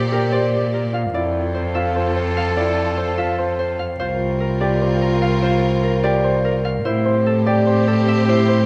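Set in a wet scoring-stage reverb with a 1.8-second decay, this excerpt of hypnotic, propulsive minimalist classical pattern music moves in a straight 7/8 at 294 eighth-note beats per minute in F major, tuned to A4 = 441 Hz. A mellow, ringing fingerpicked Celtic harp carries the melody over a clear, close-miked clarinet second line set in the background, while a lush symphonic violin section holds bowed chords with vibrato and a smooth top. A rich, even solo cello sits up front on the bass, and an open-sounding baby grand piano with long sustain joins at 0.1 s with arpeggios as the harmony moves from Bb6 to Fmaj7, C7sus4 and Am7.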